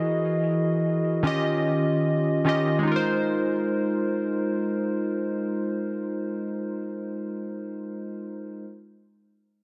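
Warm analog keys carry this brief, romantic R&B excerpt, their round, detuned tone blending square and sawtooth waves with a filter sweep, quick attacks that decay, and a chorus sheen, sitting up front in the mix. With a gentle swing in the 16ths, the keys move through tender major-seventh and dominant colors before settling on a sixth chord around 2.9 seconds, playing until 8.6 seconds. A concert-hall reverb lends a spacious glow, set against a dense, heavily limited modern master.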